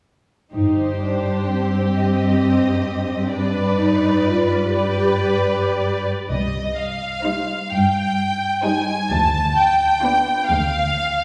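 A lush, up-front symphonic violin section carries the melody in this solemn, melancholic slow movement for string orchestra, its bowed tone rich and focused with vibrato as it sings between C5 and A5. Set in C minor and 6/8, the music moves with rubato at roughly 37-44 dotted-quarter beats per minute, and it is cut from a longer piece. Beneath the melody a chamber violin section traces a quieter second line, while the violas fill out the accompaniment with a close, warm sound. The cello section, also placed up front, anchors the bass with soft attacks, expressive portamento and vibrato, joined by a double bass section that sounds briefly at the start and returns from 6.3 s to 10.0 s. The harmony moves from Cm/G to G7, then to Cm and Bdim/D, heard from further back on a reverberant scoring stage with a 1.9-second decay.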